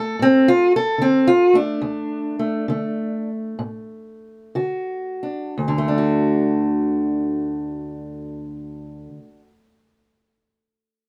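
Gritty and soulful, this short cut from a longer piece is acoustic country blues with a swung feel in four. A lone fingerpicked steel-string acoustic guitar carries the whole recording from the start until 9.5 seconds, its dark, boxy parlour tone sitting up front in the mix. The opening passage gradually slows down before the music moves into a second section at 5.6 seconds. The guitar ranges from low bass notes up into its middle register, centring on a single D chord. Close, detailed microphones and a touch of light reverb keep the sound intimate and present.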